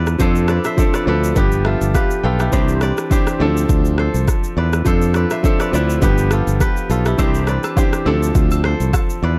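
This excerpt has a dark, warm production with little reverb, so the parts sit close and dry. It is a romantic, breezy afrobeats groove at 103 BPM in 4/4 and C major, with a light swing on the sixteenths. Up front, an electronic, produced drum kit of deep kick, rim click and shaker is pushed through overdrive, while a bright, growly fingered electric bass holds the low end with a direct tone. A clear concert grand piano with deep bass and a smooth, vintage character plays accompaniment through plate reverb, adding a fill from 1.4 to 2.5 seconds. A crisp, fingerpicked kora rings out a riff through delay, and acoustic agogo bells and woodblock slip in close but in the background at 7.2 seconds. The chords cycle through F6, G7, Cadd9 and Dm7.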